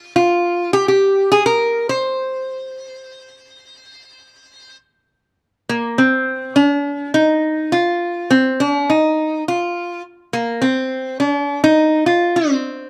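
Arabic instrumental music in C maqam bayati, this hypnotic, soulful piece moves at 103 BPM in a straight 4/4. A lap resonator guitar carries it alone from start to finish, played with fingerpicks and slide and sitting up front in the mix. Its tone is metallic and nasal, ringing between Bb3 and C5. The piece shifts into a new section at 5.4 seconds and runs on until the cut at 12.9 seconds, as this is a fragment of a longer work. Light reverb and a dark, warm production frame the bright resonator sound.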